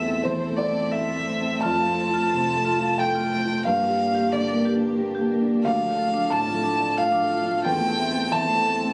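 An airy, sul tasto violin carries the melody up front in this longing, melancholic neoclassical piece in a rubato three-four, cut from a longer work. Beside it, a felt-muted upright piano plays soft, intimate accompaniment with audible action noise. A woody cello sits in the background with tape echo, a very quiet dark chamber string section holds sustained chords, and a vintage, band-limited marimba with hard mallets adds arpeggios through tape echo from 0.1 s. The harmony moves from Am/E through F, Gm and Dm back to Am/E, in a recording made on a phone in the room with club reverb.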